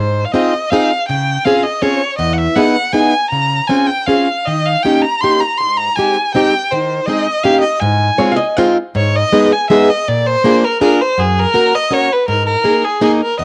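A rich, focused bowed violin sings the melody up front with vibrato in this whirling, nostalgic musette waltz at 160 BPM in 3/4 and Ab major, played rubato over a boxy, picked plugged-in steel-string acoustic guitar whose finger squeaks are audible, while a dark, clean hollow-body archtop guitar adds a brief second line from 8.2 seconds, all captured as a home cassette recording with light reverb and small-room ambience, cut from a longer piece.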